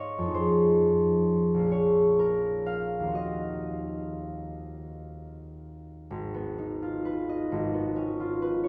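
Bathed in a long cathedral reverb, this brief fragment of a classical piece features a solo concert harp, up front, ringing and thumb-plucked with a warm acoustic tone, drifting through a gentle, mysterious rubato in 6/8 before shifting into a new section at 6.1 seconds.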